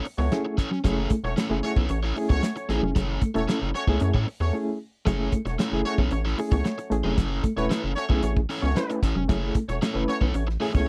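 Driving and funky, this dry, close 1970s-style funk groove rides a soul drum kit with a fat snare and a rubbery, bouncy square-wave bass up front, joined by reedy electric piano stabs with fast tremolo, a crunchy overdriven guitar accompaniment, a dark, clean electric guitar riff tucked in the background, and a distant, roomy horn section playing a tight second line in octaves, all holding one chord with a brief break at 4.5 seconds.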